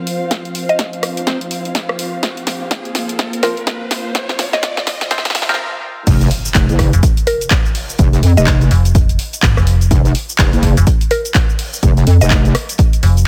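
A heavy, saturated wobble bass storms in at 6.1 s with a very quiet vintage acoustic kit, joined at 6.9 s by a metallic FM bass, marking the drop of this aggressive, gritty bass house piece with a swung feel, after a build-up in which a dark, bowed string section, a resonant sweeping pad with a filter swell, a nasal band-passed chord stab with phaser and tape echo, and an electronic riser and impact in the background gather over a punchy, tape-warm electronic kick and a layered house kit with cabasa, handclaps and rim click, while a woody, round mallet-like synth pluck with cassette-tape colour carries the melody from 0.7 s onward inside a digital ambience.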